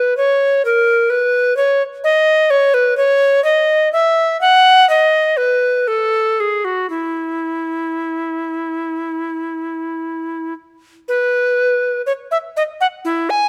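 A bright tenor recorder plays alone from the opening moment, tracing a flowing, dance-like line in a baroque-style classical fantasia whose rubato pulse gives the phrases room to breathe. Its airy, woody tone carries vibrato, a crisp chiff at the start of each note and lifted highs, and it sits up front. Close, detailed microphones and a light reverb frame this brief extract, which closes at 13.5 seconds as part of a longer piece.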